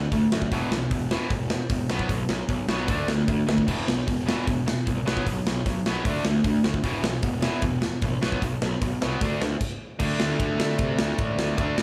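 An overdriven, double-tracked electric guitar riff and a growly fuzz bass open this angry, urgent punk rock excerpt at 152 BPM, joined at once by a big-room acoustic drum kit with a punchy kick and bright cymbals, as the guitar and bass cycle through E5, B5 and D5 in light studio reverb before a sudden stop at 9.6 s and a new section landing on D5 at 10.0 s.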